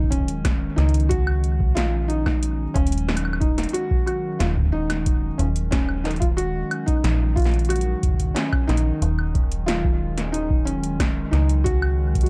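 IDM in Eb minor at 91 BPM, this eerie, cerebral excerpt sits on a single Ebm7 chord, with a felt-muted upright piano carrying an intimate melody through analog delay over a hollow, flute-like pad that pumps with sidechain and chorus, a metallic FM bass with a fast, decaying attack, a deep analog kick, and a drum machine of punchy snare, metallic hi-hats and woodblock echoing through its own delay, all in a dry but echo-heavy mix.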